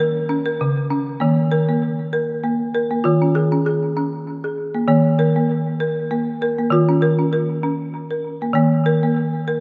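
A dreamy plate reverb soaks this brief cut from a longer world piece, meditative and gentle at 98 BPM in 3/4 with a light swing on the sixteenths. A solo folk marimba played with medium hard mallets carries it from 0.0 to 9.6 seconds, ranging from Db3 to Bb4, its woody, rustic hardwood tone sitting up front with a band-limited, vintage colour and an analog delay trailing its notes. The harmony circles between Bbm over Eb, Eb5 and Db5 over Eb, tuned slightly high to A4 = 445 Hz.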